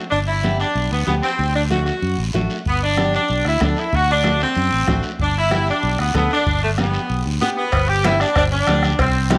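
A straight, danceable cumbia groove in 4/4 sets a festive mood, driven by a dark, round fingered electric bass up front, raspy guiro, and congas in the background, with a soft-beaten bombo joining at 2.7 seconds and a vintage, band-limited cowbell arriving at 7.7 seconds. Over this, an edgy saxophone section carries the jazz-style melody with vibrato, while a fingerpicked flamenco guitar adds acoustic accompaniment complete with finger squeak. A moderate echo-chamber reverb gives the ensemble a studio ambience as the brief excerpt moves between G and D chords.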